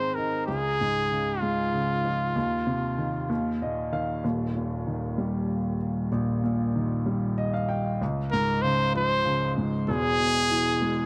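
Pop in a swaying, romantic 6/8 at 64 BPM (dotted quarters), this excerpt pairs an up-front upright piano, woody and intimate with audible action noise and long sustain, against a clear, jazz-style solo trumpet with light vibrato and tape echo that carries the melody until 3.6 seconds and returns at 8.3 seconds, leaving the piano alone in between with its fills, all set in light reverb within a dark, warm production.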